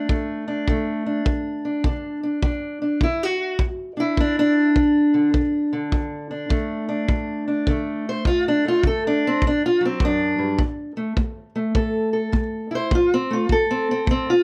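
A light reverb gives this short excerpt of acoustic country blues a close, small-room feel, with both instruments placed up front. Set in D major at 103 BPM in 4/4, it rolls along with a 65% swing on the eighth notes, and the mood is gritty and swaggering. A fingerpicked steel-string parlour guitar carries the melody across a range from D2 to C5, its tone dark and boxy. Underneath, a tight kick drum played with brushes sits mid-forward, warm and rolled off at the top, sounding from 0.1 to 14.3 seconds. The harmony moves from D5 to G5 at 1.3 seconds, settles on D at 5.9 seconds, then reaches A5 at 10.6 seconds.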